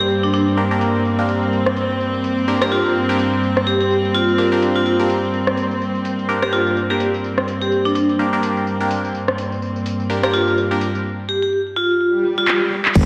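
Swung sixteenths at 126 BPM drive this bouncy, aggressive bass house excerpt in G minor, where a ringing, hard-mallet vibraphone melody with delay and rich, earthy chamber strings pumping beneath a filter sweep ride over an overdriven garage kit of metallic hats, handclaps, rim clicks, tambourine and crash, while a nasal, band-passed chord stab flickers through a phaser and delay, an electronic swell and sub drop arrive at 12.1 seconds, and a drum fill ushers in a heavy, saturated wobble bass and a tight, overdriven kick at 13.0 seconds, the whole mix soaked in a dreamy hall reverb.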